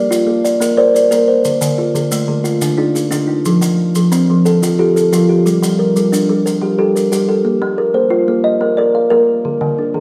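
A moderate recital-hall reverb surrounds this short cut from a longer piece, giving it a rippling, warm mood in a Southern African traditional style built on an mbira-style interlocking cycle in 12/8. Two kalimbas carry the music in arpeggios, both woody and up front with a soft fingertip pluck that sounds from a solid board. The first kalimba is a touch louder, with mellow notes that keep ringing, while the second kalimba's notes are short. Quieter maracas add a grainy, acoustic shimmer with a small-room quality from 0.1 seconds until they drop out at 7.3 seconds, leaving the two kalimbas to finish the passage alone. The harmony moves through Bb, Dm, F and Gm before returning to Bb, then falls away from chords near the close.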